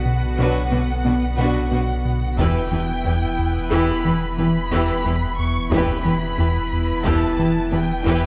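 Moving at 90 BPM in a straight 5/4, this vast, relentless cinematic cue blends orchestra and electronics in E minor, shifting from Bm to Em at 2.4 s as a very quiet, band-limited taiko ensemble struck with hard sticks enters and plays until 7.7 s. A lush symphonic violin section carries the soft-attack, expressive melody over a studio violin second line, vibrato violas and background cellos, while an evolving, warbling wavetable pad with chorus and built-in reverb holds sustained chords. Underneath, a deep sine sub bass and a dark, ring-modulated analog bass riff anchor the low end, all set in a moderate concert hall reverb in this short cut from a longer piece.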